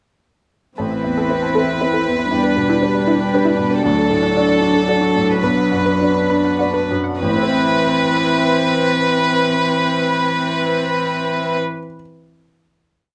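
A chamber violin section, cello, viola, upright piano, harmonium and an analog pluck all enter together at 0.8 s in this short neoclassical piece for piano and strings, set in 3/4 with a rubato, longing and melancholic feel. The violin section carries the melody up front with light vibrato and a soft, sul tasto bow, while a single dark, woody viola and a pure, floating cello hold sustained chords beneath it. A felt-muted upright piano rocks two-note chords in the bass with a mellow, intimate tone, and a reedy, breathing hand-pumped harmonium sits in the background. An analog pluck with a round sawtooth body, chorus and slapback echo adds a pulsing arpeggio ostinato until 7.1 s as the theme gradually slows, and the music comes to rest on a final chord from 7.2 s. The sound is close and detailed, with light reverb.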